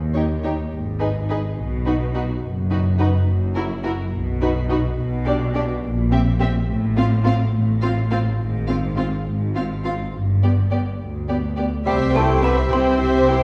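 Up front and close, a clear bowed double bass section anchors this sneaky, quirky cinematic cue in 6/8, with a lush cello section beside it. Above them, a distant violin section carries the melody while a focused viola section accompanies and a second violin section adds a smooth counterline, the strings all singing with vibrato. At 11.9 s a dry, woody xylophone struck with plastic mallets and a bassoon with light vibrato slip in from the background, and the ensemble sits in a recital-hall reverb heard from further back in the room, giving this playful, whimsical passage from a longer piece its sense of space.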